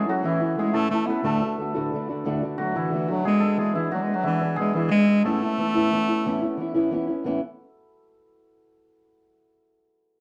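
A bass clarinet with a classical tone carries the melody up front from the very start of this cheerful, bright Celtic folk slide in A major at 120 BPM in 12/8, its line bathed in plate reverb, while a mellow, shimmering hammered cimbalom plays a second line and a woody, fingerpicked ladder-braced acoustic guitar on old strings accompanies up front through A, D, E7 and Aadd9, the clarinet dropping out at 6.9 seconds and the guitar at 7.4 seconds as the ringing cimbalom carries on to 8.2 seconds within the dark, warm production's wet studio reverb.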